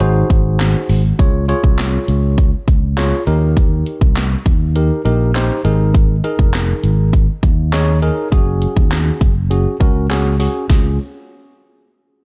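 Up front sits the punchy house drum kit, a layered electronic set of kick, cracking snare, hi-hat and handclaps with a tape-warm grain, re-recorded in a large room, playing from the very start until 10.8 seconds. This is a euphoric, upbeat dance-pop cut lifted from a longer piece, opening on a drop over its first 1.2 seconds before settling into a straight groove. A growly, amped fingered electric bass holds the low end in its own forward spot, its sidechain pumping giving the line a breathing motion against the beat. A clean tine electric piano, heard as if through its built-in speakers, carries the accompaniment lower in the mix, also pumping with sidechain. The chords move from a dominant seventh into a major chord, then through suspended colours before resolving home at 10.7 seconds, all in a dark production with little reverb.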